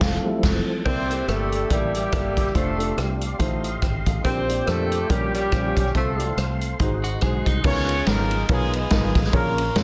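A swung 4/4 pulse at 142 BPM drives this jubilant, soulful uptempo gospel excerpt in F major, which opens on a band accent. The drum kit sits up front with a boomy kick, medium-tuned snare, hi-hat, ride, rim clicks and crash, sounding roomy with a rolled-off top, while a round, foam-muted fingered electric bass holds the low end. A dark baby grand piano with audible action noise accompanies throughout, and a clear tonewheel organ sustains chords in the background through chorus vibrato and a slow rotary speaker until 7.6 seconds. From 0.9 seconds a breathy tenor saxophone with scooped notes and slapback echo carries the melody alongside a punchy, tight horn section in octave doubling, and the sax drops out before the closing passage. A brief compressed, picked electric guitar line appears around 7.0 seconds as the harmony moves from Fmaj7 through C13 and Bbm6 to a final C#13.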